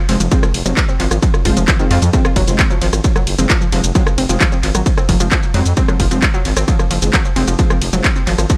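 A warbling, lo-fi pluck riff, a growling FM bass and a punchy analog drum machine open this driving peak-time techno excerpt together, with an overdriven, layered kick landing up front at 0.3 seconds. The piece moves at 132 BPM in a straight 4/4 on F minor within F phrygian, giving it an industrial, driving mood. The detuned sawtooth pluck sounds mellow and dusty, colored by chorus, tape echo and sidechain pumping, while the thick bass sits heavily under everything with its own pumping motion. Aggressive, bright sawtooth rave stabs hover in the background with chorus, 12-bit sampler grit, reverb and tape echo, falling away at 8.0 seconds. The analog machine supplies handclaps, hi-hat, ride, rim click and shaker through dub echo and pumping, backed by a barely audible, gritty sampler-style soul kit, and a faint reverse cymbal appears at 8.6 seconds within an echo-heavy digital ambience.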